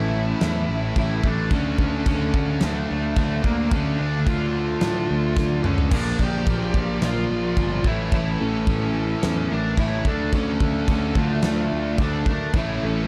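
A dark, reverberant studio sound frames this short, epic heavy metal passage cut from a longer piece, moving at 109 BPM in 4/4 with a half-time feel throughout. A dark, high-gain lead guitar carries the melody over a pair of bright, picked distorted rhythm guitars set back in the mix, one of them scooped, both playing riffs, while a growly, fuzz-driven picked bass sits prominently underneath. The big acoustic drum kit comes in at 0.4 s with a punchy kick, fat snare, toms, crash and china cymbal, and plays a fill just before the harmony moves. At 5.6 s a second distorted lead guitar line joins quietly in the background, higher than the main melody. Beneath it all, a very quiet chamber string section holds bowed chords with light vibrato and a reedy, gut-string, period-style tone, as the harmony cycles through A, D minor and B-flat before returning to A.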